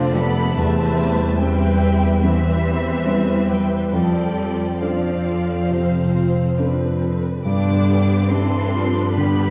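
Heard from further back in a reverberant recital hall, with a faint vinyl crackle over the top, this short fragment of a cinematic orchestral score sounds uplifting and moving. It unfolds in C major at a rubato pace of roughly 67-73 BPM in 4/4, moving through F6, Cmaj7/E and back to F6 before settling on G near 7.5 seconds. A lush, distant violin section carries the smooth, vibrato-rich melody high in its range, while a second, darker violin section shapes an expressive line beneath it. Violas sit in the background with bowed ensemble accompaniment, and expressive background cellos join a full, even double bass section in anchoring the bass, the basses being the loudest part of the blend. A polished baby grand piano adds warm support from behind the strings, and a very quiet concert harp rings through the texture with fingerpicked arpeggios, all parts sounding together across the whole 9.5 seconds.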